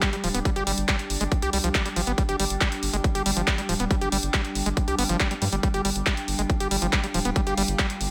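Psychedelic trance at 139 BPM in a straight 4/4, this short cut from a longer piece feels intense and heady from its first beat. A tight, up-front electronic kick drives the groove, joined by a layered big-room dance kit of handclaps and hi-hat, both dressed in studio reverb. A squelchy, gritty acid bass carries the riff, its resonant sawtooth tone plucked through a filter, distorted and trailed by tape echo, while a round analog bass enters at 0.2 seconds to hold down the deep low end. Behind them an evolving wavetable pad sustains chords with a morphing, detuned shimmer of chorus and phaser, and a warbling, lo-fi tape-like pad adds a nostalgic, dark texture higher up, both sitting in the background. Sidechain pumping breathes through the acid bass and both pads, and a light digital ambience wraps the whole mix.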